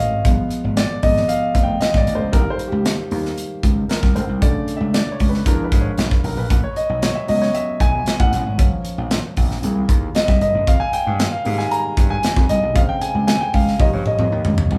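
Polished 1980s jazz-funk pop with a glossy, breezy mood, this excerpt puts an intimate grand piano up front as it solos throughout over chords such as G7b9, Bm9, C7alt and Fm11, its action noise audible in the mix. A gritty, overdriven slap bass adds bright, punchy bite, while a modern acoustic drum kit with an airy feel and a medium-tuned snare enters at 0.2 seconds and closes with a fill from 13.8 seconds. The band sounds as if playing live together in one small room with moderate ambience.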